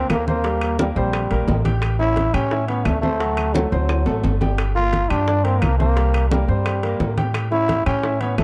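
Fiery and driving, this salsa piece moves at 174 BPM in a straight 4/4 and is heard as a short cut from a longer performance. A raspy, growling trombone takes the solo melody up front, bright and gritty with vibrato and scooped notes in a pop style. Beneath it, a clear concert grand piano accompanies with a polished, present tone, deep bass and short sustain, while a pizzicato upright bass with steel strings sits up front, thumpy and growly. Congas, bongos, claves and timbales come in at 0.1 seconds: compressed, saturated congas and woody claves stay in the background with tight, high-tuned bongos, and ringing metal-shell timbales sound distant in a large room. A drum fill arrives at 3.6 seconds over harmony that moves through chords such as Eb6, A7, D7 and Gm7. Light reverb and a dark production shade the whole.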